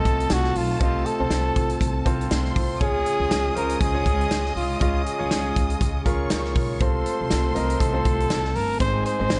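Light reverb and a small-room ambience frame this short, warm and uplifting piano-driven pop cut, moving at 120 BPM in 4/4 with a gentle sixteenth-note swing over chords of F, Db, F/C and Ab. A breathy, whispered trumpet carries the melody up front with vibrato and scooped notes, while a lush bowed violin section adds a second line, a clear concert grand with audible action noise and long sustain supplies the accompaniment, and an airy pad with a chorus effect holds soft sustained chords in the background. From 0.1 seconds a woody pizzicato upright bass and a natural country drum kit with a punchy kick and medium-tuned snare join in.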